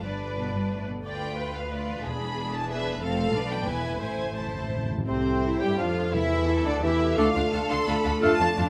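A close, detailed recording places this fast, stormy romantic orchestral passage in a moderate recital hall reverb, cut from a longer piece in A minor and 3/4 at roughly 166-188 BPM, with an urgent, rubato feel. From the start, a lush violin section carries the melody with smooth, even vibrato, while a second, intense violin section and clear violas fill in the inner lines, a ringing harp spins arpeggios in the background, and focused cellos and bright double basses anchor the bass. Timpani struck with hard mallets on calf heads enter at 2.1 seconds, and the harmony moves through diminished and dominant colours before settling on A minor with a timpani fill from 4.0 seconds. At 5.1 seconds the woodwinds and brass join for the second section: an airy, expressive flute, a very quiet clarinet and a close-miked cor anglais share the second lines, a present bassoon adds accompaniment, and a mellow, roomy French horn section holds soft-attacked chords. 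The passage then turns toward D minor.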